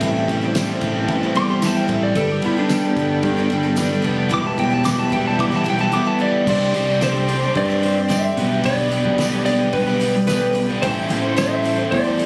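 A lightly broken-up, twangy lead electric guitar opens this dusty, reflective folk rock and heartland rock excerpt with a solo that runs to 6.5 seconds, carried by a crunchy, double-tracked overdriven riff guitar up front with spring reverb. Beneath them, a round, picked electric bass and a damped 70s drum kit with a fat snare, tight kick and rolled-off top hold a straight groove, joined by a jingly tambourine from 0.6 seconds. A shimmering, octave-doubled twelve-string acoustic guitar is picked in the background, alongside a reedy, sweet accordion sustaining chords with light tremolo tuning. A mellow vintage baby grand piano with long sustain sits very quietly under the band. The chords move from Am7 through Gadd9 and Em, then Csus2 and G/B before returning to Am7. The whole excerpt sounds as if captured on a phone in the room, with light club reverb around it.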